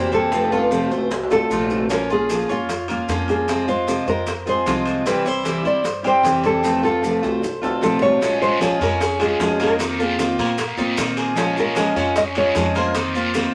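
A wet studio reverb gives this short excerpt of Cuban son and guajira a roomy, danceable glow, with a warm, full-bodied picked steel-string acoustic guitar sitting up front as the accompaniment. Over it, a thumb-plucked nylon-string guitar with fresh strings carries the melody in a classical tone, while a bright, metallic Cuban tres with double strings, some doubled at the octave, picks arpeggios. A woody, dark upright bass plays pizzicato on steel strings with a growly edge. In the background, tight, high-tuned bongos with a compressed, saturated sound join ringing metal-shell timbales that seem distant in a large room. Grainy, mellow maracas add to the percussion, and drum fills arrive at 0.3 and 6.6 seconds. At 8.2 seconds a raspy, band-limited guiro with a vintage colour enters as the harmony settles into a back-and-forth of Bbm7 and F7sus4.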